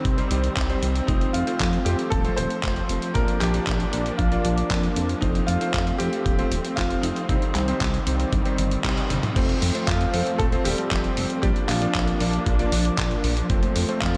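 Veiled, con sordino strings and a gritty, dusty soul-style drum kit with handclaps, hi-hat, toms and crash open this sunny, playful italo disco excerpt, joined at once by a thumpy electronic kick, a glossy chorused synth bass with delay and clangy electric grand piano stabs in the background, before a brilliant grand piano carries the melody from 1.1 s and a band accent and drum fill at 8.8 and 9.1 s lead into a new section, all soaked in dreamy cathedral reverb.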